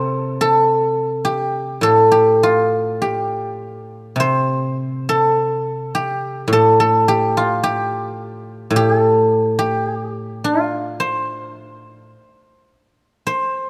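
Pastoral and flowing, this fragment of Chinese traditional music features a solo guzheng, played with fingerpicks, moving in a loose rubato around 52 BPM in 2/4, tuned to A4 = 444 Hz. The acoustic instrument sits up front with a ringing, silvery tone spanning A2 to C5, and the music shifts into a new section at 4.2 seconds before the clip ends at 13.7 seconds. Light reverb and small-room ambience frame the playing in a rough, homespun demo mix.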